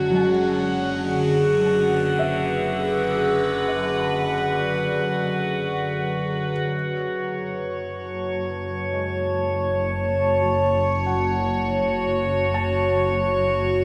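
Ambient piece in F# minor at 61 BPM, spacious and reflective, cut from a longer work: a bright, morphing wavetable pad with phaser holds sustained chords up front beside a calm, glassy texture of drifting overtones, while a felt-muted upright piano plays mellow arpeggios in the background, its action noise audible through a diffuse delay. A distant bowed double bass section adds expressive vibrato on a low F#, and a warbling, detuned analog drone with chorus sounds until it stops at 6.8 seconds, just after the harmony settles from G#dim over F# to F#m at 6.7 seconds. A wet scoring-stage reverb surrounds the whole.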